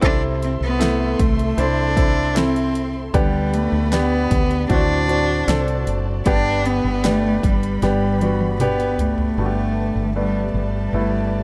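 Heartfelt and tender, this 77 BPM pop ballad in G major features an intimate, airy-bowed cello melody with light vibrato over polished, short-sustained grand piano, a round, woody fretless bass, a lush symphonic string section in the background, and a punchy, layered electronic drum kit whose fill from 7.8 to 9.4 seconds leads into a closing Gadd9 chord after the drums stop.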